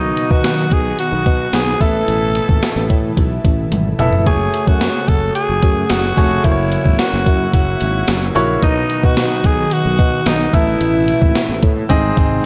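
Dramatic and moody, this 1980s-style pop excerpt moves at 110 BPM in a straight 4/4, cut from a longer piece and set in a dark production with a moderate scoring-stage reverb. A raspy, gritty alto saxophone carries the melody up front with light vibrato and a smooth top, bathed in shimmer reverb, and it stops at 11.6 seconds. Beneath it, a clear concert grand piano accompanies with deep bass, long sustain and audible action noise, while a swirling, detuned analog pad holds sustained chords in the background through phaser and chorus. A growly fretless electric bass sustains low notes with a lush chorus, and a gated 80s digital drum machine sits up front with a thumpy kick, hi-hat, toms and a gated-reverb snare, adding a fill at 3.7 seconds. The harmony moves from B through Asus2, F#madd9 and F#7 back to B and Asus2, landing on G# as the piano plays a closing fill from 11.9 seconds.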